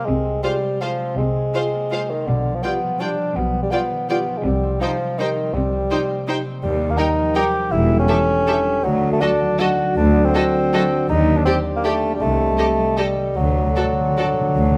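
The recording sits in a moderate recital hall with a 1.7-second reverb tail, caught by detailed microphones placed near the players. This bittersweet, sweeping classical passage in triple metre moves with a flexible rubato and is cut from a longer piece. A roomy solo bassoon with light vibrato sits up front carrying the accompaniment, while a ringing, fingerpicked concert harp spins arpeggios and rich, focused double basses join a cello section with a smooth top to anchor the low end. Violins carry a lush, expressive melody in the background, a second, distant violin section traces a line beneath it, violas add an even accompaniment, and a dark French horn section holds sustained chords from afar. At 13.4 s, hard-mallet timpani with calf heads enter close and dry for an articulate fill as the harmony settles on a D chord.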